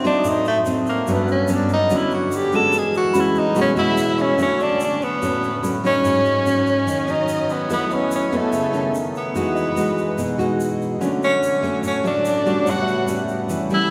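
Relaxed and romantic, this bossa nova excerpt features a tenor saxophone up front with a smooth top and light vibrato, taking a jazz-style solo over a full-bodied, fingerpicked nylon-string guitar whose finger squeaks are audible. Behind them sit a mellow, clean tine electric piano heard through built-in speakers, a nasal cornet stop on pipe organ with audible chiff holding sustained chords, and a grainy, bright egg shaker up close. At 3.8 seconds a lush, bowed violin section enters very quietly with a soft attack as a second line, all within the wet wash of a church reverb, as if the band were playing live in one room.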